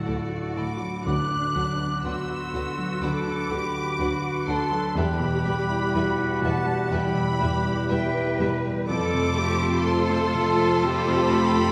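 Cinematic and bittersweet, this moving excerpt unfolds with a free, rubato feel: a bowed violin section carries the high melody with vibrato and a smooth top, while a natural-sounding grand piano accompanies and a very quiet concert harp adds ringing, fingerpicked arpeggios. Supporting lines come from a soft-attacked oboe, a clarinet in the background, a mellow, hollow silver flute with a crisp attack, and a lush second violin section, with a viola section filling the middle and a distant cello section and an even, rich double bass section underpinning the harmony. The ensemble sits in a wet scoring-stage reverb, heard from further back in the room, as the chords move from Dadd9 through Bm/D and Em to F.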